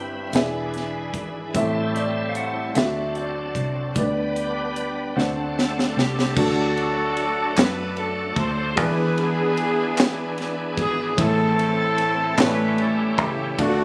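A slow, reverent gospel piece in a straight 6/8 opens with a slightly broken-up, compressed electric slide guitar singing the melody over a woody upright piano with long sustain, full tonewheel organ chords that shout through a slow rotary speaker with chorus vibrato and key click, and a very quiet, lush string section bowed sul tasto. A fingered electric bass gives a punchy, foam-muted low end, while a tight, dry funk drum kit sits up front with bright cymbals, a high-tuned snare and a snug kick. The harmony moves through E7, Am7 and D7 before reaching D, and a drum fill carries the music into the second section as the guitar falls away at 5.9 seconds and the strings end with the first section. A mellow, loose horn section with light vibrato and tape echo picks up the melody at 6.0 seconds, sounding both roomy and present. Crisp, human group handclaps join in the background from 7.6 seconds, and the whole excerpt carries light reverb and the ambience of a phone recording made in the studio.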